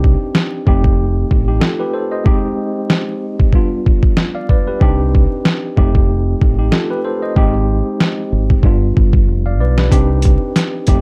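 Gritty, compressed sampler-style drums with a thumpy kick and medium-tuned snare sit up front in this dark, moody boom-bap hip-hop cut from a longer piece, swinging over a round, punchy dub bass and a worn, slightly out-of-tune tine electric piano coloured by cassette tape, cycling through Cmadd9, F7, Abmaj7 and G7 in a dry, dark, warm mix with vinyl crackle, as a drum fill at 9.3 seconds closes the break.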